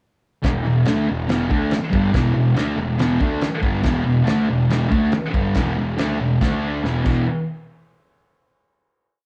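Rowdy and raw, this short garage rock piece, played by a duo or trio, bursts in at 0.4 seconds with a thick fuzz guitar picking a power-chord riff, dark and distorted, double-tracked and up front in the mix. Beneath it, a cloth-damped drum kit thuds out a garage stomp groove, its fat snare and tight kick sitting under dark, rolled-off cymbals and crash. A growly, overdriven bass with a punchy, bright edge drives steady eighth notes in the background, doubling the guitar riff. The chords move from E5 to D5 and back, and a drum fill at 6.8 seconds leads to a final hit at 7.3 seconds that carries the piece to its end. The whole band sounds captured live in one room on cassette tape, wrapped in a wet stone-room reverb.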